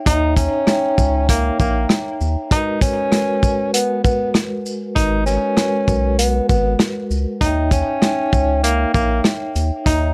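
A lo-fi, lightly reverberant boom-bap hip-hop excerpt in G# minor at 98 BPM with a swung 16th feel, gritty and moody, where a mellow, subtoned tenor saxophone with scooped notes carries the melody up front through plate reverb and digital delay, over a metallic, ringing vibraphone with fast motor vibrato and cassette-tape coloring, a round, deep analog bass, and a dry, muffled soul drum kit of kick, snare, rim click, hi-hat and shaker, moving from D#7b9 to G#m9 and back.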